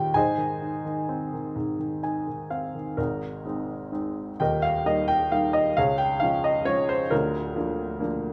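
Tender and peaceful, this brief classical fragment for solo piano unfolds in a slow, rubato 6/8 at about 42-45 BPM in Ab major, tuned slightly low to A4 = 439 Hz. A dark, worn baby grand sits up front and intimate, its boxy tone and short sustain framed by audible action noise and a moderate recital-hall reverb, ranging from D1 up to Ab5. After the opening on Ab, a brief fill at 1.6 seconds leads into a second passage from 3.0 seconds, where the harmony moves through Eb and Db to Bb/D as the cut-off fragment closes at 8.3 seconds.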